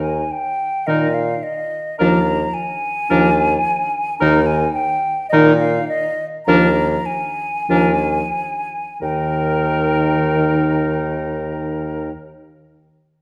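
An airy, hollow silver flute carries the melody up front in this graceful, spirited classical-period wind quintet movement, cut from a longer piece, with a warm bassoon holding the bass beneath it from the start. At 0.9 seconds a smooth-topped oboe adds a second line, while a bright, vintage-toned clarinet sits in the background and a mellow French horn with light vibrato fills in the accompaniment over two alternating chords. The rubato playing slows between 3.1 and 9.0 seconds, and the dark production places the quintet in a wet recital hall.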